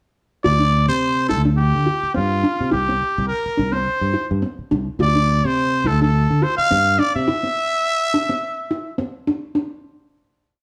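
A growling trumpet and a handpan open this short, hypnotic afrobeat piece together at 0.4 s, with a fingered electric bass joining almost at once on a punchy, syncopated riff that sits up front. The trumpet carries the solo in a pop style, close-miked and raspy, with vibrato and scooped notes shaping a motif-based melody built in sentence-like phrases. Beneath it, the handpan rings out a meditative arpeggio ostinato, its nitrided steel giving airy tones struck with sharp finger strokes. The bass drops out at 7.3 s, leaving the trumpet and handpan to carry the intense groove; the trumpet ends at 8.9 s, and the handpan rings on to the close at 9.6 s, followed by a brief final note. The band plays live in one large studio room, and a moderate reverb adds space around the parts.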